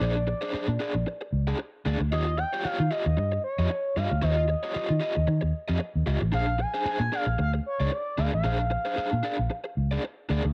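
A lightly reverberant home cassette recording carries this energetic, funky excerpt, cut from a longer piece at 114 BPM in Bb mixolydian, with 16ths swung against a Bb9 to Eb9 and back to Bb9 groove. Up front, a dark, round, punchy foam-muted electric bass anchors the low end, while a crunchy overdriven picked guitar with tremolo fills in the chords. Over them, a smooth, expressive sawtooth-and-triangle synth lead with a soft attack, vibrato, chorus, tape colour and analog delay sings sustained lines until 9.9 seconds.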